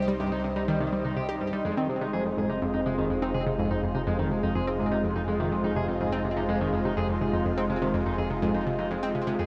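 A steady, straight 4/4 pulse at 124 BPM drives this luminous, expansive stretch of ambient, sequencer-driven space music, cut from a longer piece and running about 9.5 seconds. The harmony rests on C minor before moving to Fm7 at 1.6 seconds, with every part sounding from the start. A lush, thick unison pad of detuned sawtooth and square waves with a sub octave holds sustained chords up front, its slow attack and long release colored by chorus, phaser and shimmer reverb. A bright analog pluck, round and fast in attack with a short decay and a filter sweep, repeats a riff through chorus, delay and shimmer reverb, while a clean, picked electric guitar adds arpeggios with delay and shimmer reverb of its own. Beneath them a fat analog bass sits on C2, sustained and evolving, with a detuned sawtooth tone and a filter pluck. The whole dreamy mix is soaked in a cathedral reverb with a 5.3 second decay, giving the music a vast, floating sense of space.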